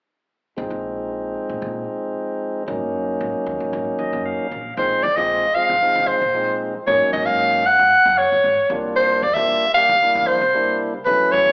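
A straight 4/4 groove at 114 BPM drives this funky, soaring electric jazz fusion cut from a longer piece: a clean tonewheel organ with stopped rotary speaker and slapback echo plays Bb9sus4 and Ab9sus4 chords over woody, thumpy pizzicato upright bass from 0.6 seconds, the organ adds a fill at 3.7 seconds, and at 4.8 seconds a mellow, breathy soprano saxophone solo with vibrato, scooped notes and slapback echo steps up front, the whole sound carried through the venue's PA with club reverb, small-room ambience and an AM-radio tint.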